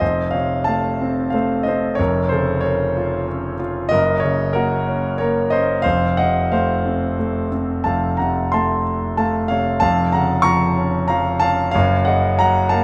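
A triple metre, stretched and held back with expressive rubato, carries this cool, bittersweet solo classical piano excerpt in a lyrical style. The concert grand sits up front with a clear, intimate tone, deep bass, long sustain and audible action noise, ringing through moderate recital hall reverb for the full 12.8 seconds.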